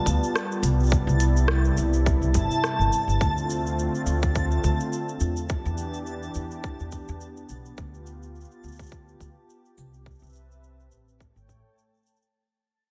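Folktronica at 105 BPM in D dorian with a gentle 16th-note swing, this wistful, intimate fragment from a longer piece fades out across its 12.3 seconds as a detuned, warbling analog pad with subtle chorus holds chords from G7/D through Cmaj7, Dm7 and Em7 to a closing A7, a reversed, granular swelling texture shimmers high on A5, a woody pizzicato upright bass with tube saturation sits up front, and a tight electronic kick sits alongside an organic electronic kit of crisp hi-hats, cabasa and rim click, all bathed in a lush hall reverb.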